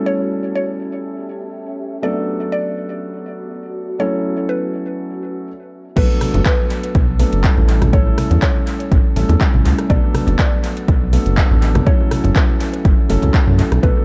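Deep house with a moody, smooth character, cut from a longer piece and bathed in echo-heavy digital ambience. It opens on stabs from a felt-muted upright piano, soft and intimate with audible action noise and tape echo, over an ethereal, airy pad that sits dark in the background with ensemble chorus and its own reverb. A woody, mallet-like synth pluck carries a short melody through lush chorus and tape echo, moving over chords of A7, Bm7 and F#m7. The pad drops out at 5.5 seconds for a brief stop, and at 6.0 seconds the drop arrives. A punchy, overdriven electronic kick sits up front, a round, deep analog bass pumps to the sidechain, and a deep house kit adds metallic hats, handclaps, rim clicks, ride and crash with overdrive and dub echo. Very quiet, low-tuned congas with a thick skin fill out the groove beneath the gently swung sixteenths.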